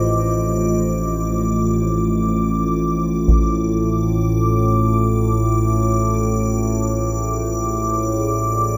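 This dark ambient drone fragment feels ominous and dark, with its sounds suspended in a huge, wet reverb that trails on for seconds. Up front, a warm analog drone hums low, its sawtooth, pulse and wave-folded sine tones slowly evolving under chorus. Further back, a deep, moody analog pad holds sustained chords built from detuned square and sawtooth waves with a sub octave and a ring-modulated edge. High above, an icy glass pad adds a crystalline, airy shimmer, its bright detuned sines carrying a breath of noise and a moving notch. The harmony rests on Cmadd9 before shifting to Fm at 3.3 seconds, where a taiko ensemble strikes briefly through a low-pass filter with heavy sticks, close and dry.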